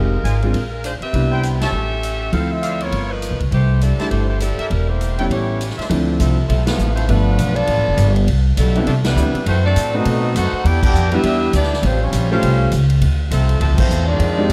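Big band swing in a swinging, energetic mood, this excerpt from a longer piece is carried by a tight saxophone section playing the melody with a soft attack, vibrato and a touch of analog delay, sitting present in the mix. A baby grand piano accompanies with an intimate, natural sound in which the action noise can be heard, while a woody, dark pizzicato upright bass sits up front. An acoustic drum kit with a punchy kick, a medium-tuned snare, hi-hat, ride and crash swings with a natural big-room character. A loose trumpet section adds stabs in the background, also touched by analog delay, until 5.9 seconds; just before that, at 5.3 seconds, a vintage-toned trombone section with light vibrato enters on a second line. A band break at 5.6 seconds and ensemble accents punctuate a jazz progression rich in ninths, altered dominants and half-diminished chords, all set in light reverb and small-room ambience.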